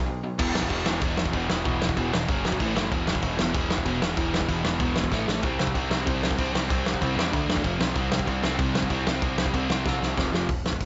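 A loose indie drum kit, an overdriven semi-hollow guitar and a growling electric bass strike together at the very start, then drop into a brief break at 0.1 seconds before this energetic, rowdy punk rock clip charges ahead at 190 BPM in a straight 4/4. The bright, double-tracked hollow-body guitar plays a picked riff up front over chords moving through E5, F#5, A5, C5, D5 and F5. Underneath, the picked bass adds a growling, overdriven low end with a mix of direct and amped tone. The acoustic kit sits mid-forward in a studio room, with a fat snare, a punchy kick, crash and hi-hat, all gritty and saturated with a rolled-off top. Drum fills arrive at 5.1 and 9.9 seconds. The sound is dry, close and dark-edged, and the clip is cut from a longer piece.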